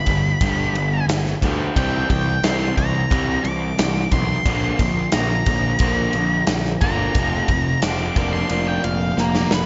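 Classic rock in a confident, sunny mood, cut from a longer piece, with a dark octave-fuzz lead guitar soloing over G, C, Bb and F chords above a crunchy overdriven rhythm guitar with slapback echo, a very quiet distorted electric guitar, a growly fuzz-picked bass up front, a gated 80s drum kit of tight kick, medium-tuned snare and bright ride cymbal, and a barely audible grainy tube shaker, all in a lush hall reverb and big arena sound, with a drum fill from 9.2 seconds.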